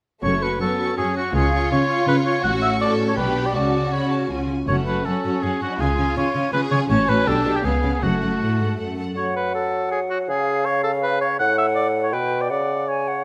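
A stormy, urgent passage from a fast romantic orchestral movement in triple time opens at 0.2 seconds with the full string body and an oboe sounding together. A distant, lush violin section carries the melody up high, while a second violin group with a focused, smooth top and an up-front oboe with light vibrato supply second lines. An intense viola section sits in the background as accompaniment, and the bass is held by a close, rich cello section and a clear, even double bass section. The strings fall away by 9.2 seconds, leaving the oboe to continue beside an airy, metal-toned flute on a second line and a soft-attacked bassoon in accompaniment until 13.2 seconds. The harmony moves between minor and dominant chords, and the close, detailed recording carries light reverb.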